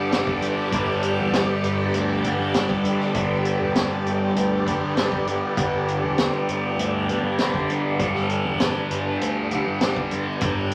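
Hazy and trippy, this short psychedelic rock cut sets a thick, bright fuzz guitar riff, double-tracked with distortion and phaser, up front over shimmering, chorused string-machine violin chords on a Gadd9, a round, overdriven fuzz bass sitting in the background, and a punchy vintage drum kit with a high-tuned snare and rolled-off top entering at 0.1 seconds, all bathed in moderate studio reverb and vinyl crackle.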